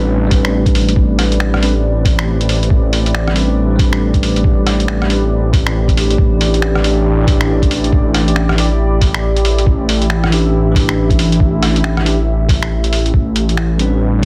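A wistful, ghostly future garage excerpt with a swung 16th-note feel, where a bell-like, clean tine electric piano pumps under a low-pass filter and analog delay over a deep, dark, chorused ambient pad, while a menacing, saturated detuned saw bass swells up front and a muffled, thumpy, tape-warm kick joins a pitched-down lo-fi kit of finger snaps, hi-hat and rim click from 0.3 seconds, the kick dropping out briefly at 12.7 seconds, in a dense, heavily limited mix with light digital ambience.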